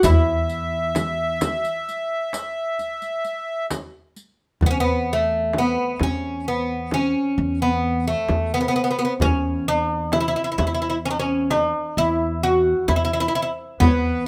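A bright, woody fretless oud leads this festive Arabic maqam ensemble piece in 10/8, its plectrum-plucked double strings sitting up front with the melody. A reedy, sweet accordion with light tremolo tuning adds a second line up front, dropping out at 3.7 seconds and returning near the close at 13.8 seconds. Underneath, a thumpy pizzicato upright bass with steel strings stays on a single low note throughout. The percussion blends a deep, large clay-shell darbuka, compressed and saturated in the background, with a close frame drum played with soft hands, while a dry, hard-handed riq adds jingles until 4.3 seconds. Light reverb gives the group a warm, shared space in this excerpt cut from a longer piece.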